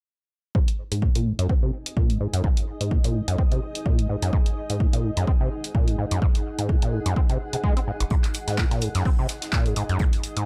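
A punchy, tape-warm analog kick drives this trippy, raw acid house cut at 127 BPM in 4/4 with a light 16th-note swing, as a squelchy, resonant sawtooth acid bass riff with overdrive, digital delay and a filter sweep sits up front from 0.6 seconds, analog drum-machine handclaps and hi-hat join, a cloudy, detuned granular pad with built-in reverb and sidechain pumping drifts in at 1.7 seconds, and an airy acoustic kit's hi-hat and snare appear faintly in the background at 8.1 seconds, all within a dark production in Ab mixolydian.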